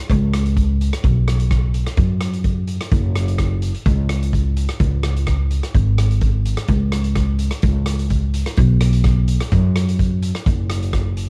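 A woody, dark upright bass on steel strings anchors this bouncy, festive calypso at 127 BPM in a straight 4/4. It is played pizzicato and sits up front, holding the low end between F#1 and F#2. A street-band drum kit plays alongside it throughout with hi-hat, rim click and a boomy kick; it has an airy, polished big-room character, also sits up front, and carries a cassette-tape colour, all within a dry home recording on cassette cut from a longer piece.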